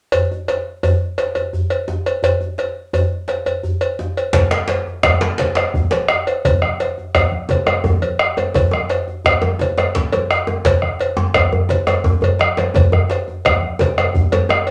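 Powerful and festive, this cut from a longer West African traditional drum ensemble piece moves at 114 BPM in a straight 12/8. It opens with a metallic, close and dry cowbell up front beside a tight, cracking djembe with metal rattles played with soft hands in a small room. At 4.3 seconds a round bombo, a second up-front djembe in a live room, and bright, thin-skinned, medium-tuned congas tucked in the background join the groove, all set in a wet studio reverb, with a drum fill at 12.2 seconds.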